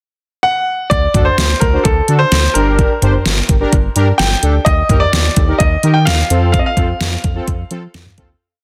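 A straight, driving 4/4 pulse comes from an overdriven pop drum kit, its knocking kick, deep snare, hi-hat and syncopated toms sitting up front in a layered, drum-machine style. This short, cool synth-pop piece opens at 0.4 s with a clear baby grand piano alone in the pickup bar, shaping a motif-based melody in sentence-like phrases, touched with tape echo. At 0.9 s the drums and a round analog bass arrive together, the bass pulsing in dark eighth notes with a ring-modulated edge. Analog synth brass soon adds fat, nasal off-beat triads with chorus, vibrato and a filter sweep, moving through D, Gm, Eb and F. The sound is dense and heavily limited with light reverb, and the whole piece fades out from 6.5 s.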